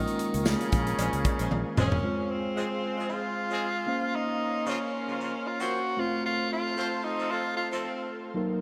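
This short excerpt of moody, nostalgic 1980s-style pop opens with a band accent at 114 BPM in 4/4, lightly swung. A clear tenor saxophone with vibrato carries the melody, sounding distant and roomy yet up front, over a mellow tine electric piano and a lush, thick, detuned pad treated with chorus and phaser in the background. For the first 2.0 seconds, a fingered electric bass with a punchy tone and a modern studio drum kit with gated reverb, tight kick and medium-tuned snare drive the opening, joined briefly by a very quiet metallic cowbell. At 1.0 seconds a loose horn section enters, adding light-vibrato stabs in octaves from the background, before a drum fill closes the passage. From there the bass and drums drop out, and the saxophone, electric piano, pad and horns carry on. The harmony moves from Bbm7 through Fm and Bbmadd9 to F, all bathed in a bright digital production and a lush hall reverb.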